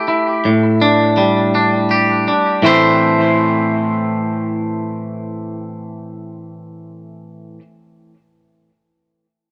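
In a slow 6/8 that moves at 55 beats per minute in dotted quarters, with a straight feel, this brief rock excerpt in A minor sets a melancholic, brooding mood. A single twangy electric guitar carries everything, playing clean, picked arpeggios that ring bright and up front across a range from A2 to C5 for the full 7.6 seconds. An analog delay trails its notes, and a moderate large-studio reverb with a touch of small-room ambience gives the sound depth. The harmony sits on a G5 over A early on, then settles onto A minor at 2.6 seconds as the passage moves into a new section. Cut from a longer piece, it feels moody and hangs in the air.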